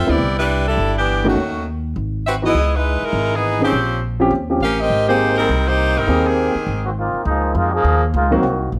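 A bright, tight saxophone section carries the melody in this swinging, brassy big band excerpt at 203 BPM in Ab major, backed by a growly, woody pizzicato upright bass and an intimate upright piano with audible action noise and long sustain. At 6.8 seconds a nasal, straight-muted trombone section enters with a smooth top. The saxophones drop out just before 6.9 seconds, and the trombones take a solo from 7.3 seconds, all set in a moderate large studio reverb. The harmony moves through rich extended chords such as Cmaj9, Dbm9 and Eb13 before reaching Abmaj9, then Abadd9, and finally Db69.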